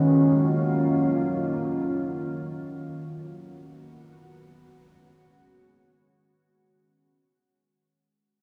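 A dark, glassy, ethereal FM pad with a sub-octave and slow attack holds sustained chords up front, moving from Ebm9 to Bmaj7 at 3.0 s and Db9sus4 at 4.6 s in Eb minor, while ensemble chorus, its own reverb and a cassette tape haze give this brief, free-time hip hop fragment a spacious mood in a small home room, fading out across its 6.3 seconds.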